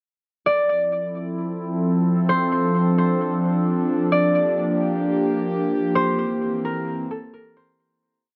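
A sparse, ringing concert harp loop, softened by a low-pass filter and tape echo, floats over a warbling, detuned tape-like pad of sustained Fmaj7, Dm7, Gm7 and C7 chords dressed in chorus and phaser, giving this blissful, nostalgic half-time hip hop piece in F major at 131 BPM an echo-heavy, dreamy haze in a moderate echo chamber before the fade-out from 6.0 to 7.8 seconds.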